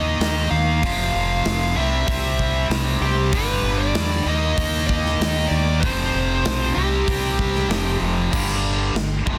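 Hard rock with a powerful, swaggering mood, cut from a longer piece, where a dark, smooth overdriven lead guitar carries the melody until 8.0 seconds over two bright riffing guitars (one tight and distorted, the other a cranked, phaser-tinged stack sitting in the background), a round, deep fingered electric bass, and a big acoustic rock kit entering at 0.2 seconds with punchy kick, bright cymbals and a medium-tuned snare, all in light reverb and a dense, heavily limited modern master.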